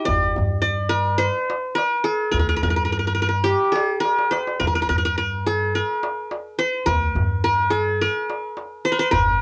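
A fingerpicked qanun with triple strings opens this stately Arabic maqam ensemble fragment, bright-edged and up front in plate reverb, joined almost at once by a woody, thumpy pizzicato upright bass on gut strings and a crisp, deep, compressed metal-shell darbuka that plays a fill at 4.0 seconds, all captured with light room reverb on a home cassette recording.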